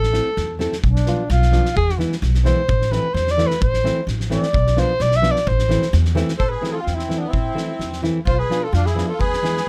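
A dry, close recording with most parts up front, this short cut from a longer Balkan wedding-band tune moves at 129 BPM in 2/4, restless and virtuosic in A harmonic minor, its harmony circling Am, Bdim and E. A mellow alto saxophone with light vibrato and a soft, classical attack takes the solo for the first 6.4 seconds over woody pizzicato upright bass, a thumb-plucked nylon-string guitar with audible finger squeak, and a loose acoustic kit with a fat snare, punchy kick, rolled-off top and pumping room. At 6.4 seconds a reedy, shimmering musette accordion enters quietly as a second line.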